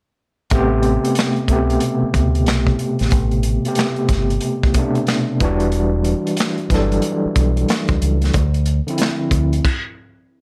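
A swung sixteenth-note groove at 92 BPM in 4/4 drives this introspective, smooth neo-soul R&B excerpt, built on a crunchy, saturated breakbeat kit of tight kick, medium-tuned snare, handclaps, hi-hat and dark crash cymbal with a rolled-off top. An up-front, barky tine electric piano, overdriven through a combo amp with medium tremolo, plays Am9 chords before moving to Em9 at 5.4 seconds and Dm9, while a deep, round dub bass played with the fingers holds the low end. Light reverb adds a little space, and the band stops together at 9.6 seconds, leaving a brief break.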